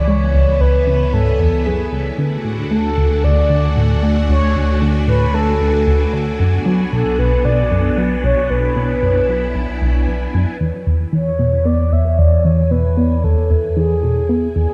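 This mysterious, cosmic ambient excerpt opens with a round, horn-like synth lead singing an up-front melody between G#4 and E5, its vintage warble carried by chorus, vibrato and tape echo. Beneath it, a swirling string machine holds bright, slow-blooming chords through ensemble chorus and a phaser, while an evolving analog drone with pulse-width modulation anchors the low end between B1 and E2. An airy, breathy noise layer tuned to G#5 sits dark and distant in the background, fading in over the first 10.6 seconds. From 0.1 seconds a punchy, funky analog bass riff adds plucked, quickly decaying notes with a moving notch and tape echo, ranging from B1 to B3. At a straight 114 BPM in 4/4, the harmony drifts from C#m through D and Bm before settling on E at 10.6 seconds, where a new section begins, all bathed in a moderate plate reverb and an echo-heavy mix.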